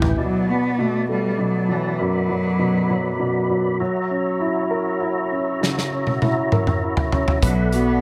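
A bowed cello carries the melody in this melancholic six-eight pop ballad excerpt, its nasal, boxy tone shaded with vibrato and sitting up front from 0.2 s. Beneath it, a woody upright piano supplies open accompaniment throughout, while a mellow, dark tonewheel organ holds sustained chords coloured by chorus vibrato and a slow rotary speaker. At a slow 66 BPM, the harmony moves from Bm7 to F#7 and back with an aching pull. A round, foam-muted fingered electric bass and a picked steel-string acoustic guitar, heard with a touch of finger squeak as it plays arpeggios in the background, appear only briefly at the start and return near the close at 7.4 s. A loose indie drum kit, acoustic with a medium-tuned snare and tight kick, plays a fill from 5.6 s, and light small-room reverb surrounds the recording.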